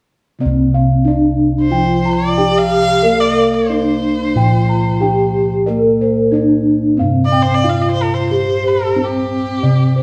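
Serene and shimmering, this short gamelan excerpt moves at 91 BPM in a straight 4/4, set in C slendro. Bronze metallophones begin at 0.4 seconds, the upper one carrying the melody with padded disc mallets, its paired tuning producing shimmering beats, while a lower metallophone sounds a mellow, airy accompaniment beneath it. Bossed gongs join from the same moment, one group playing arpeggios with a close, dry and full tone, and another holding the bass with round, soft, mid-forward strokes from padded beaters. At 1.6 seconds a bowed erhu enters with a second line, played by a single player with vibrato, soft attacks and expressive portamento. The ensemble sounds as if performing live together in a stone room whose reverb lends the ringing bronze a lingering halo.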